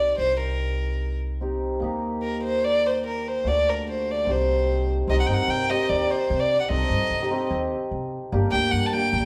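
Festive yet soulful, this klezmer passage moves at a brisk 147 BPM in a straight 4/4, cut from a longer piece and lasting just over nine seconds. A single bowed violin carries the melody up front, played sul tasto with a soft attack, airy bow and light vibrato that give it a close, intimate voice. Beneath it, a hammered cimbalom supplies the accompaniment with a shimmering, ringing sound, sitting up front as well, while a pizzicato upright bass on steel strings anchors the low end with a woody, growly thump. The harmony moves from C minor through E-flat and D before returning to C minor, with a shift to a second section at 5.1 seconds and a turn to G minor at 8.3 seconds. The trio plays live together in one large studio room, and a generous reverb lends the ensemble a spacious, resonant glow.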